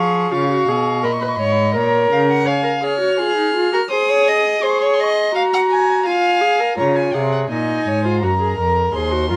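In a straight triple metre, this joyful, lively baroque-style fugue for string quartet, cut from a longer piece, sets a dark, distant first violin melody above a nasal second violin line and a close viola accompaniment with an airy bow, while the reedy gut-string cello bass drops out at 2.5 seconds and returns at 6.8 seconds, all played in period style under light reverb.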